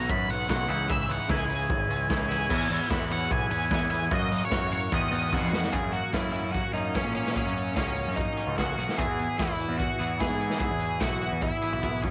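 A dry home cassette recording with little reverb captures this upbeat yet wistful indie rock passage, cut from a longer piece, moving at 148 BPM in straight 4/4 in E lydian and tuned slightly flat to A4 = 438 Hz. A dark, up-front octave-fuzz lead guitar carries the melody with distortion and tape grit. Beneath it, a raw garage drum kit, saturated with a boomy kick and a rolled-off top in a pumping small room, drives the beat with fills at 5.3 s and 11.8 s. A growling picked bass, bright and overdriven, anchors the low end under a twangy, clean electric guitar riff bathed in spring reverb and a very quiet, mellow electric guitar playing its own fingered riff. Softly underneath, a brassy analog pad of detuned sawtooth with chorus, vibrato and an airy noise layer holds sustained chords, moving through Badd9, C#madd9, E, F#7 and Emaj7 before the second section opens at 5.7 s on F#add9 and returns to E.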